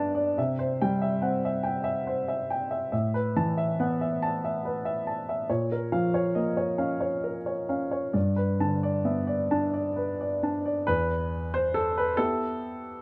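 Melancholic and wistful, this is a short cut from a longer neoclassical minimalist piano piece, moving at a slow 46 BPM in 6/8 with a loose, rubato feel. A single baby grand piano carries everything alone from 0.0 to 13.0 seconds, ranging from E2 up to A5. Its tone is warm and natural, sitting up front, captured by close, detailed microphones with a light touch of reverb. The harmony drifts through C, Asus2, A#m and Gadd9 in the opening section. At 10.9 seconds the music shifts into a new section on an E minor chord, and the recording breaks off shortly after, at 13.0 seconds.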